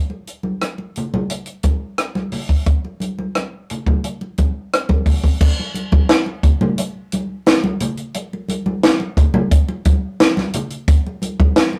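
Soul at 88 BPM in a straight 4/4, this bittersweet, cinematic excerpt pairs ringing, close congas with an up-front compact cocktail drum kit whose high-tuned snare, tight kick, rim click, hi-hat and dark crash cymbal sit dry and natural, all captured in a rough rehearsal room with a small room's moderate reverb and warm saturation, shifting into a new section at 5.4 seconds.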